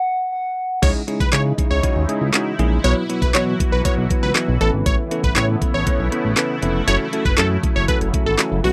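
A hollow, woody synth lead with a clarinet-like tone opens this driving dance-pop excerpt alone, holding a single high note with chorus, vibrato and tape echo. At 0.8 seconds the full band drops in at 119 BPM in a straight 4/4 in C# minor, and a punchy, catchy plucky unison lead takes the melody, its detuned sawtooth body coloured by phaser, tape echo and sidechain pumping. Beneath it, a bell-like tine electric piano plays clean, direct accompaniment, while a sweeping resonant pad holds evolving, detuned chords, both pumping against the beat. The glossy, nasal pulse-wave synth bass sits up front with the electronic R&B drum kit, whose knocking kick, woody snare, hi-hat, handclaps and crash cymbal give the section its energetic drive. The harmony moves through C#madd9, Bsus4, Aadd9 and F#m7, captured in a dry, close studio sound with a 1970s character.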